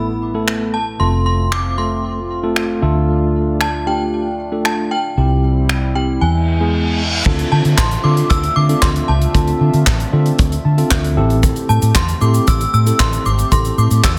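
A straight 4/4 pulse at 115 BPM drives this confident dance-pop excerpt, where a soft-mallet drum kit with a boomy kick and fat snare enters at 0.5 seconds to join a dark, foam-muted vintage electric bass already sounding from the start, while a clean tine electric piano and a shimmering pulse-width pad pump against the sidechain beneath an inharmonic, warbling FM synth chime melody with tremolo and delay, and a reverse cymbal and downlifter sweep in from 6.4 seconds before a brief silent gap and an electric piano fill at 10.4 seconds.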